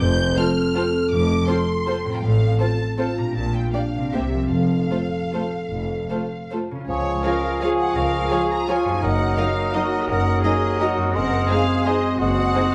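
A rubato 3/4 lilt at 142-183 BPM carries this sweeping, elegant orchestral ballroom waltz in F major, where a rich, focused violin section sings the melody over mellow French horn chords, ringing harp arpeggios, a clear double bass section and a smooth cello section, with a lush second violin line and a viola accompaniment with portamento joining at 0.4 s, before the music turns to Db major at 6.9 s as an airy flute, a vintage-toned cor anglais and a soft-attack bassoon enter, the whole excerpt sitting in a wet stone room reverb.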